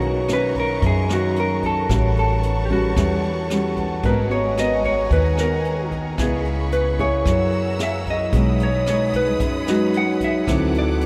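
Wistful and melancholic, this straight-feel bossa nova excerpt in 4/4 sets a dark, clean hollow-body jazz guitar melody up front over thumb-plucked nylon-string guitar, a woody pizzicato upright bass, and a jazz kit played with brushes, its boomy kick joined by hi-hat and rim click. Behind them, a vibraphone with medium mallets rings in the background, adding a fill from 3.2 to 4.0 seconds, while a lush, bowed symphonic string section holds soft-attack chords with expressive vibrato. The harmony moves through rich extended chords from Bmaj9 to D9, all bathed in a huge ambient reverb that suggests a vast, echoing space.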